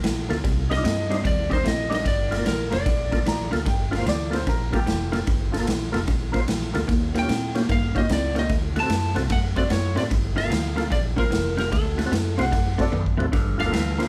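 A gritty, punchy garage drum kit sits up front in this soulful, smoky electric blues shuffle excerpt, joined by a round, foam-muted bass, a lo-fi riff guitar from a small old amp in the background, a percussive tonewheel organ with slow rotary speaker and overdrive, a twangy, lightly driven lead guitar carrying the melody from 0.7 seconds, and a bright, woody upright piano adding a brief second line from 3.3 seconds, with a drum fill at 12.9 seconds and the band playing live in one room with light reverb.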